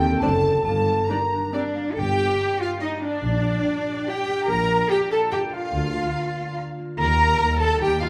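Bathed in a wet recital-hall reverb, this short excerpt of a playful, whimsical film cue in 3/4 feels mischievous and magical: a vibrato-laden violin section carries the melody, a second, close and expressive violin section joins at 0.2 s, a delicate, bell-like celesta sounds the tune only until 1.7 s, and a warm clarinet line ends at 1.9 s, while an airy flute traces a distant second line, roomy French horns hold sustained chords in the background, a ringing harp spins arpeggios, smooth violas accompany, and an up-front, rich cello section anchors the bass with a dark tuba and soft-attack double basses.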